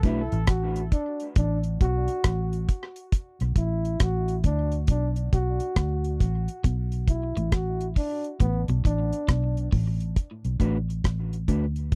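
A slow, swung 68 BPM dub reggae groove in B minor, cut from a longer piece, sets a hypnotic, spacious mood on a dry, close 1970s-style studio sound, where a deep, tight-kicked drum kit with hi-hat and rim click and a round, foam-muted, up-front bass lay down the groove over a Bm7 chord, while a dark trombone with vibrato and scooped notes carries a tape-echoed second line until 9.7 s, a slightly broken-up picked guitar adds a background riff from 6.6 s, and a mellow, clean fingered guitar returns briefly at 10.6 s.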